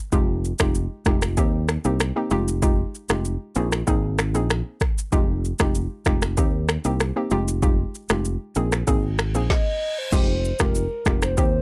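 A hollow, bouncy square-wave pluck with chorus, a growly fingered electric bass and an up-front afro-pop drum kit with deep kick, woody snare, shaker, finger snaps and rim clicks open this smooth, sultry afrobeats excerpt at 96 BPM in F minor, cycling through Fm9, Eb6 and Bb9sus4 in a dry, gritty recording, until a reverse cymbal sounds at 9.1 seconds and a soft, full-bodied clarinet-like synth lead with vibrato, chorus and phaser enters at 9.5 seconds.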